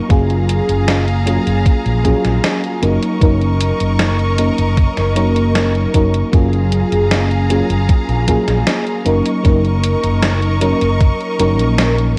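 An FM electric piano layered with a soft pad provides the accompaniment in this dreamy, nostalgic vaporwave fragment, its detuned, warbling tone coated in lush chorus, vintage 12-bit sampler grit and analog delay. The piece moves at a relaxed 77 BPM in a straight 4/4, drifting between F#maj9 and D#m7/F#, which return at 6.3 seconds for a second pass. Beneath the keys, a mellow fretless electric bass sits up front with a dark, round, amped sound and analog chorus. A thumpy electronic kick carries tape-softened weight and drops out at 11.2 seconds, while a gated 80s digital drum machine supplies hi-hat and a gated-reverb snare with a small-room character. High above, a clear symphonic string section holds sustained, bowed chords with vibrato, sounding focused yet distant. The whole cut has a cassette-tape finish with light reverb and digital ambience, and it is taken from a longer piece.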